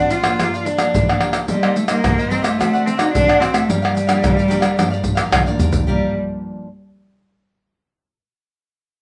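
Maracas, pandeiro, tamborim and a deep surdo set a festive, joyful samba and choro groove at 109 BPM in a straight 4/4, with soft hands and a vintage, band-limited sound up front, and a drum fill at 5.3 seconds. Over it a single bowed cello carries a smooth, even melody with vibrato in G minor, moving through Gm7, Cm7 and D7. In the background a bright, crisp picked cavaquinho and a dark, thumb-plucked classical nylon-string guitar accompany, with the guitar ringing on to 6.7 seconds in this short cut from a longer piece, all set in a wet studio reverb.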